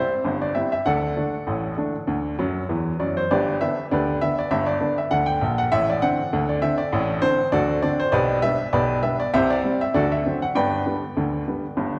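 A clear, woody upright piano plays this cheerful, lively ragtime excerpt alone in 2/4 with a light swing, its smooth, vintage, short-sustained tone sitting up front in a wet concert hall reverb, spanning G1 to G5 and adding a brief fill at 2.4 seconds as the chords move from C through D and D7 to settle on G.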